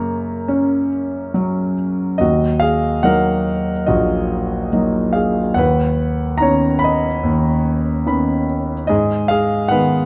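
The rhythm moves in a flexible rubato over a steady four-beat metre, giving this lyrical classical solo piano passage an unhurried, breathing pulse. A single concert grand carries everything, reaching from deep, resonant bass notes up into the upper register with an intimate, up-front presence and the audible noise of its action. The harmony opens on F# before settling into Ebm at 2.2 seconds, where a new section begins, and later passes through Badd9/D# on the way to Abm. The piano adds a brief fill between 7.7 and 8.9 seconds just before that final change. A moderate recital hall reverb surrounds the instrument with a natural sense of space, and the peaceful, warm mood holds throughout this short passage cut from a longer piece.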